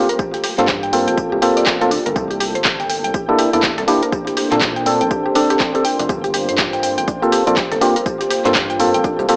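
A dark, hollow organ stab sits up front in this hypnotic, moody deep house excerpt, its percussive, chorused hits pumping against the sidechain and trailing tape echo through a Gm11, C13, Bbmaj9 progression. Beneath it, a deep, warbling pad holds sustained chords in the background, its slow attack and long release wrapped in chorus and built-in reverb. A woody, round mallet-like pluck spins bright arpeggios with a touch of 12-bit sampler grit, while a rubbery, bouncy square bass enters at 0.6 seconds with a resonant filter pluck. The swung groove comes from a punchy analog drum machine playing cabasa, handclaps and hi-hat, an electronic kick, and a very quiet, gritty, pitched-up breakbeat kit adding hi-hat, snare and tambourine. The whole mix has the lo-fi, small-speaker character of a home cassette recording, set in a moderate digital room.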